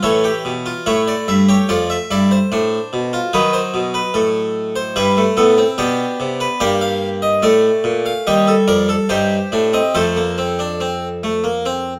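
A solo harpsichord opens at once, its plucked, full tone from a Flemish-style instrument with two sets of strings placed up front in light reverb. The music is a classical, baroque-style four-part fugue at 72 BPM in a straight 4/4, with an elegant, joyful mood. The harpsichord covers a range from Eb2 up to F5 and is tuned to A4 = 441 Hz. The harmony moves from A7 through Dm/F, B7, Em/G, Gm and Cm/Eb before arriving on F at 10.0 seconds. This 12-second passage is cut from a longer piece.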